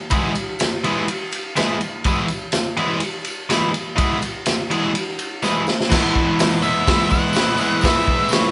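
Garage rock with a swaggering, raw attitude, this short excerpt cut from a longer piece drives along at 124 BPM in a straight 4/4, sitting in E major. A cranked stack guitar, bright, overdriven and double-tracked, picks out the riff up front from the very start, ranging from E3 to G#4. Beside it, a crunchy breakbeat drum kit sounds saturated and gritty, with dark cymbals, a medium-tuned snare and a tight kick, its top rolled off, while a jingly tambourine sits very quietly in the background. A drum fill at 5.4 seconds leads into a new section, and at 6.6 seconds a dark, fuzzy octave-fuzz lead guitar enters with a picked melody between C#5 and F#5. The whole band sounds like it is playing live in one room, wrapped in a moderate stone room reverb that gives the sound a dusky, lo-fi edge.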